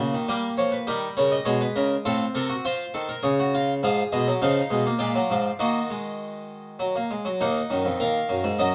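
A solo Flemish-style harpsichord, close-miked and up front with a full, dry, plucked tone from its two sets of strings, opens this contemplative, serious passage cut from a longer baroque-style four-part fugue in triple time, moving through a brief new section at 7.4 seconds within a moderate studio reverb.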